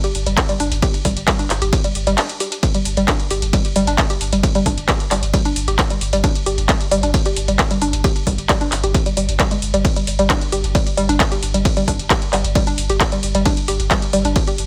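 A lightly reverberant, up-front mix opens this intense, hypnotic slice of driving peak-time techno, cut from a longer piece. A punchy electronic kick arrives at 0.4 seconds beneath a layered techno kit of handclaps, metallic hi-hats and ride cymbal, while a deep, thick saturated sub bass pumps with sidechain compression through a low-pass filter. On top, a woody, wave-folded pluck riff with a mellow chorus, tube grit and tape echo repeats hypnotically, with a brief break from 2.2 to 2.6 seconds.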